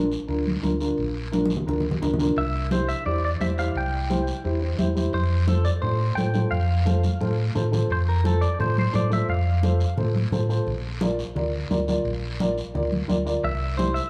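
Cumbia in F major at a brisk 174 BPM, this sunny, joyful excerpt rides on a raspy, close guiro and soft-handed, thick-skinned congas, with a round, amped fingered electric bass and a woody, slightly detuned upright piano sitting up front in a small, lightly reverberant room. A twangy, compressed clean electric guitar carries the melody from 2.4 seconds, its bright picked lines dressed in spring reverb and slapback echo. Drum fills and a brief piano fill punctuate a loop of Bb, C and F chords.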